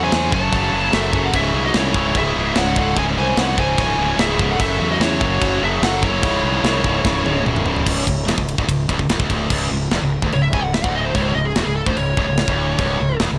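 Epic and heavy, this dry heavy metal excerpt drives at 147 BPM in C# harmonic minor, anchored by a tight, up-front acoustic drum kit with a rolled-off top and a growly, fuzz-laden fingered bass. Three picked rhythm guitars stack the low riff: a bright high-gain part and a bright overdriven part sit in the background, while a sludgy, double-tracked guitar lies very quiet beneath them. Over this, a dark high-gain lead carries the melody alongside a bluesy background lead that drops out at 7.4 seconds; after a drum fill, a lead solo takes over from 9.5 seconds.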